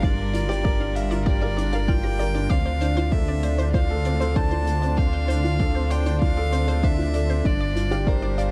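A deep, rumbling detuned saw bass sits up front with a sidechained pump, paired with an overdriven electronic kick, in this hypnotic, moving piano-and-strings electronica excerpt that moves from Gm7 to Dm7 at 2.5 seconds and back at 7.5 seconds. A soft, felt-muted upright piano riff and a pure, floating solo violin melody carry the tune, both bathed in shimmer reverb, while a bowed string section holds sustained chords and a lush, warbling unison pluck spins delayed arpeggios in the background. An airy brushed hi-hat ticks faintly beneath a dark production with light small-room ambience.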